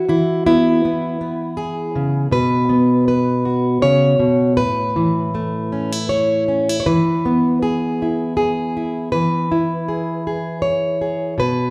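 A fingerpicked, plugged-in steel-string acoustic guitar with a full-bodied jumbo tone sits up front in this hopeful, nostalgic solo folk excerpt in E major, moving in a rubato 3/4 at about 80 BPM through E, B5, Asus2 and back to E across its 11.7 seconds, with a moderate reverb that suggests a church or concert hall.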